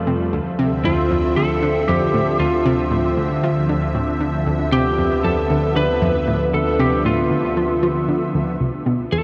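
Ambient, sequencer-driven space music at 116 BPM in 4/4 with a straight feel, this expansive, hypnotic excerpt sits in D dorian and is cut from a longer piece. A lush, thick unison pad built from detuned sawtooth and square waves holds sustained chords up front from the start, its slow attack colored by chorus and phaser, while a lightly driven electric lead guitar, dark, slightly broken-up and compressed, picks a melody between F4 and B4 through tape echo. Just after the opening, an analog pluck with a fast attack and short decay lays down a low riff, its round, full-bodied tone shaped by ring modulation, a filter sweep, chorus and tape echo. The harmony rests on Dm7 before moving to Cadd9 at 8.6 seconds, where a deep sine sub bass slips in, barely audible. The whole mix floats in a huge, wet reverb with an 8.0-second tail and carries the worn, warbling pitch drift of old cassette tape.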